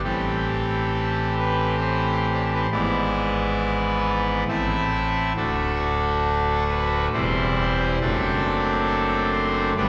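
Reverent and majestic, this brief classical chorale-style fragment, cut from a longer piece in a rubato 3/4, features a solo pipe organ on its brassy, bright trumpet stop with a baroque voicing spanning D1 to E5, sitting up front yet heard from further back in a church whose wet reverb lingers for 2.7 seconds, as the harmony moves from Am7 through E7/G#, Am, D and C/E to D7/F#.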